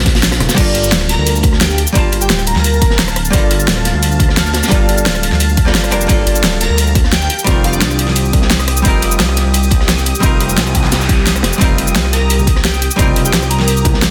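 Liquid drum and bass, soulful and dreamy, in which a deep, rumbling detuned saw bass sits up front beneath a punchy layered electronic kick, a pop kit with a fat snare and bright hats, and a gritty, saturated breakbeat kit tucked in the background, while a clean, dark hollow-body archtop guitar with digital delay plays accompaniment, a lush chorused and phased pad holds chords from 1.3 seconds, an airy, soft lead with dub echo drifts in with brief phrases, ringing congas surface near the end, and an electronic noise sweep at 10.6 seconds leads into a short kick dropout, all within a dense, heavily limited modern master.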